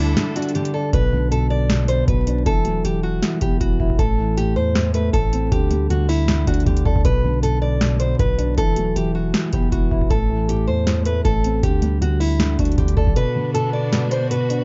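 Eerie and hard-hitting, this half-time trap excerpt sets a fingerpicked nylon-string guitar melody, bright with fresh strings, finger squeak and a touch of delay, over a soft, boxy felt-muted upright piano and a deep, sine-like 808-style bass that holds long, decaying notes. An overdriven analog drum machine sits up front with a booming kick, crisp snare and metallic hats, entering at 0.2 seconds alongside a brief break that lasts until 0.9 seconds, while a lush bowed string section with vibrato appears only at the opening and returns at 13.2 seconds, when the bass stops and the kick drops out. The production is dark and dry, with vinyl crackle and a dulled top end.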